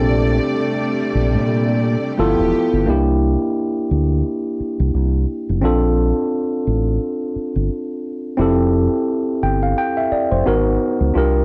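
A tine electric piano, a bowed string section and a fingered electric bass open together on a lush Bbmaj13 chord in this smooth, relaxed R&B excerpt cut from a longer piece. The strings offer soft-attacked, intimate sustained chords with gentle vibrato and a sul tasto hush, colored by cassette tape, before they stop at 2.9 seconds as the harmony moves from G13 to C9. From there the worn, slightly out-of-tune electric piano carries the accompaniment, clean and up front, its cassette tape treatment adding a lived-in haze. Beneath it the dark, round bass sits punchy and up front, thickened by tube saturation. The chords drift through Bbmaj9 and Fmaj9 to a closing Abm9 over a lightly swung sixteenth-note feel. A moderate studio reverb and the home cassette recording give the whole piece a cozy, homemade character.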